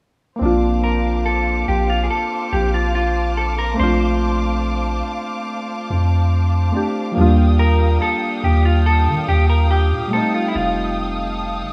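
A rough home-demo mix with small-room ambience and light reverb frames this tender, romantic R&B fragment in Bb major at 71 BPM, cut from a longer piece. A deep, sine-toned 808-style bass sits up front with long sustained notes beneath round, wave-folded electric-piano-like synth keys shimmering with chorus, while a rich bowed string section holds smooth, vibrato-laden chords as the harmony moves from Bbmaj9 to Ebmaj9 at 7.2 seconds. From 0.8 seconds a dark, clean, fingered electric guitar carries the melody up front, coloured by lush chorus.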